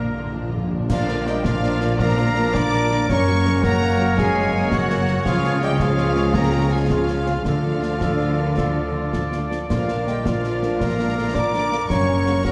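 A soft-mallet timpani fill opens this heroic, triumphant film-score excerpt in 12/8 at 109 BPM, beneath a lush violin melody with vibrato, a very quiet second violin line, a clear oboe, an expressive viola accompaniment with portamento, dark, distant French horn chords, ringing fingerpicked harp arpeggios, woody double basses and background cellos, before an airy flute, a roomy clarinet, soft-attack trombone chords, mellow vintage trumpet stabs, and snare drum, bright clash cymbals and bass drum join at 0.9 s, set in a wet scoring-stage reverb.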